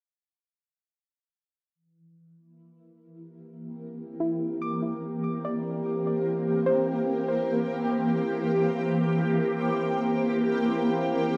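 Luminous and warm, this ambient passage, cut from a longer piece, floats in a dreamy space soaked in lush hall reverb with a 2.8-second decay. A shimmering, ethereal pad carries the harmony from 3.6 seconds in sustained chords built around C7. The pad sits bright and up front, its detuned unison voices and octave-up shimmer thickened by chorus, phaser and its own reverb while a filter sweep moves through it. At 4.2 seconds a soft, round pluck joins with gentle, decaying arpeggios. Its darker tone is coloured by chorus and delay, and it falls silent at 9.3 seconds while the pad sustains to the end.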